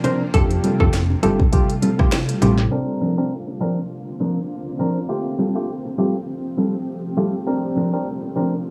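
Bouncy and summery, this dancehall excerpt at 101 BPM with a 16th-note swing rides on an up-front afro-pop drum kit with deep kick, sharp snare, finger snaps, rim clicks and smooth hats, joined by very quiet low-tuned bongos and a round, punchy hollow-body electric bass, all of which drop out by 2.7 seconds. A clean, compressed electric guitar plays dark arpeggios while a percussive, organ-like stab punctuates the harmony and a blurred granular cloud pad with sidechain pumping sustains Fadd9 and Bbadd9 chords, and a detuned square-wave pluck with chorus and tape echo sounds only in the first 1.4 seconds. From 2.7 seconds a filter sweep runs to the end of the clip, set in light reverb and small room ambience under a low-pass filter.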